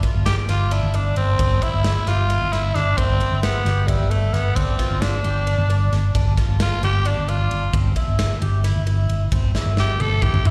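Shimmering, octave-doubled twelve-string acoustic guitar arpeggios with slapback echo, a round, dark fretless bass held up front on a low G, and a gated 80s drum kit with punchy kick and bright cymbals open this intricate, bright progressive instrumental excerpt in 7/8 at 265 BPM in eighths, before a raspy, gritty tenor saxophone enters at 0.3 s for an edgy, vibrato-laden solo, treated with slapback echo and analog delay, over chords moving from G5 to C/G to G7(no3), all heard as a live gig through the venue's PA with recital-hall reverb until a drum fill at 9.5 s.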